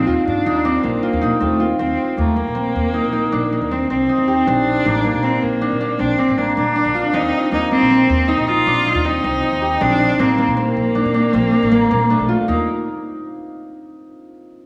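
From the opening second, a fingerpicked concert harp rings out bright arpeggios, a bowed viola sings an intense second line with vibrato, and a woody, growly pizzicato upright bass sits low beneath them, all three playing together in this restless yet hopeful contemporary chamber piece in Eb lydian. The music moves at 157 BPM in a straight 7/4, with harmony shifting from Eb6 to Eb5 and alternating with Bbmaj7, while the clear viola and harp sit up front. A moderate concert hall reverb surrounds the trio, and the excerpt is cut from a longer piece, with all parts stopping at 12.7 seconds.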